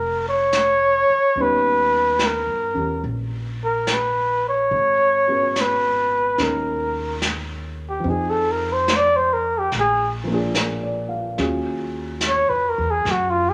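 A smoky, melancholic jazz ballad at 72 BPM in 4/4, swung on the eighths, this short passage cut from a longer piece features a flugelhorn solo from 0.0 to 13.5 seconds. The close-miked flugelhorn sits up front with a soft attack, light vibrato and scooped notes, carrying the melody between F4 and D5. Beneath it, a dark baby grand piano supplies mellow, intimate accompaniment with short sustain and audible action noise. A pizzicato upright bass on gut strings adds a woody, thumpy low end, while a vintage brush kit enters at 0.5 seconds with brushed snare and hi-hat, its small-room sound rolled off at the top. The harmony moves through minor-seventh and eleventh colours, from Bbm7 and Eb7b13 to Abm11, Fm7, Bb7 and Ebm11, all wrapped in light reverb.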